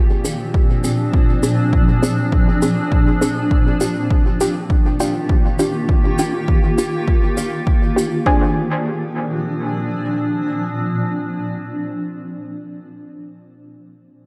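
A granular cloud pad opens this ambient dub excerpt, its cloudy, blurred sustained chords evolving in Bb mixolydian at 101 BPM in 4/4 with a light 16th-note swing, and the mood is spacious and hazy. Almost at once a filtered dub chord stab joins, its muted, deep sawtooth tone detuned and softened by chorus, cassette tape colour and dub echo, while a filter sweep moves across it through the first 8.3 seconds. A punchy, overdriven electronic kick sits up front from 0.5 seconds, and an airy acoustic shaker adds a brushed, polished texture of its own, trailed by dub echo. The harmony moves from Bb9 to Ebmaj9 at 3.5 seconds and returns to Bb9 at 8.3 seconds, where the drums fall away and the pad and mellow stab carry on alone. The whole mix is dreamy and soaked in a lush hall reverb.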